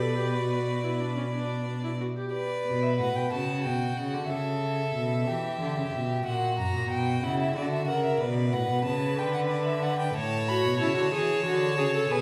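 Heard from further back on a reverberant scoring stage, this short cut from a longer baroque-style fugue for string quartet unfolds at a stately 61 BPM in 12/8, elegant and poised in B minor. A clear, smooth first violin carries the melody high above a focused, more distant second violin line, while a rich, expressive cello sits up front on the bass with soft attacks and touches of portamento. The even-toned viola adds accompaniment until 2.3 seconds and returns at 10.5 seconds, all four bowed with vibrato as the harmony moves through C#m7b5 and F#7 back to B minor.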